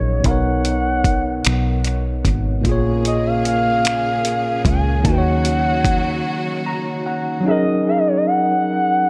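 Sensual and intimate, this slow six-eight R&B cut in F# major moves at 50 BPM, with a smooth, gliding triangle-and-sine lead carrying the melody up front through chorus, phaser, vibrato and dub echo over a clean tine electric piano that also trails dub echo. A deep, round, foam-muted fingered bass and a gritty, compressed sampler-style soul kit of finger snaps, hi-hat and thumpy kick hold the groove, while a lush, close studio string section adds bowed chords from 2.7 seconds, all set in light reverb and an echo-heavy digital ambience. The drums drop out at 6.0 seconds and the bass follows at 6.2 seconds, opening a break filled by the electric piano, before the excerpt settles onto an F#69 chord at 7.4 seconds.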